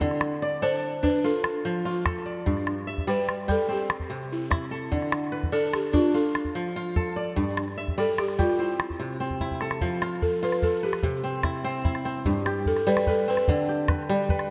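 Ringing, crisp fingerpicked kora arpeggios sit up front in this flowing, warm West African traditional piece at 98 BPM in 12/8 and F lydian, joined by a small, close calabash and, from 0.6 s, a woody, buzzing balafon struck with soft rubber mallets that takes a solo at 9.8 s after a brief drum fill at 9.3 s, the mix soaked in a lush hall reverb that lends this short cut a dreamy glow.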